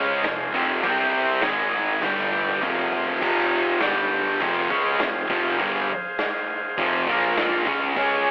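A straight 4/4 pulse at 101 BPM drives this swaggering, raw garage rock clip in F minor, with an acoustic drum kit in the background from 0.2 s, its punchy kick and medium-tuned snare saturated and gritty with a rolled-off top, and a drum fill from 2.0 to 3.2 s leading into the second section. Up front, a thick, double-tracked fuzz guitar picks a bright, distorted riff over chords moving from Fm through C5, Ab5 and G5, later reaching Bb5 and Db5, while a round, overdriven fingered electric bass adds a dark fuzz underneath. A vintage combo organ holds buzzy sustained chords with light vibrato, and the recording as a whole carries a telephone-like tone and light reverb.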